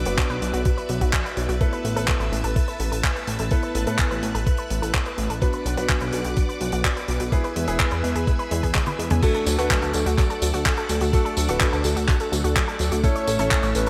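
Romantic, danceable italo disco excerpt at 126 BPM in A major, where a thumpy, up-front electronic kick and a dry, damped 70s drum kit with handclaps, tambourine and gated reverb drive a glossy chorused synth bass, nasal analog pluck arpeggios in the background, bright grand piano stabs with delay and lush ensemble-chorused string machine chords over Bm, Asus2 and E, before a drum fill at 8.8 seconds ushers in a dark, round octave-layered synth lead with phaser, vibrato and cassette tape colour at 9.2 seconds over D and A.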